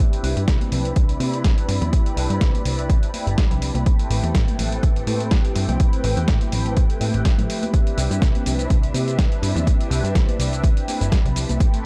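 A filtered disco house groove at 124 BPM opens with mellow, detuned synth brass and a rich bowed string ensemble holding Cmaj9 and Am7 chords under a filter sweep, both pumping against an up-front, punchy electronic kick that enters at 0.5 seconds. A gritty, overdriven sampler-style kit of hi-hat, shaker and snare plays alongside ringing tambourine and congas in the background, while a plucky sawtooth bass with a moving notch adds funk over the swung 16th feel. The dark, dry production gives this groovy excerpt a dusty, sampled character.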